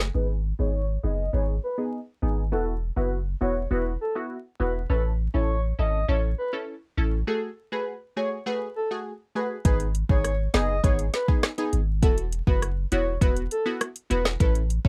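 Dancehall in G# phrygian at 101 BPM, this tough, hypnotic excerpt is cut from a longer piece and moves through G#m, Esus2, A and F#madd9 in a straight 4/4. A deep, up-front sub bass with a pitch-drop attack holds the low end throughout, while punchy, detuned sawtooth and pulse-wave chord stabs sit lower in the mix, treated with chorus, sidechain pumping and a low-pass filter sweep from 0.1 to 9.7 seconds. Above them, a breathy, flute-like synth lead with vibrato and a soft attack carries the melody from 0.1 seconds, colored by chorus, a low-pass filter and slapback echo. The electronic afro-pop drum kit, with a deep kick, woody snare, metallic hats and rim clicks, is heard only briefly at the very start and then drops out. A break runs from 7.3 to about 9.7 seconds, and the kit returns up front from 9.6 seconds for the rest. The sound is dry and close, with vinyl crackle running through it.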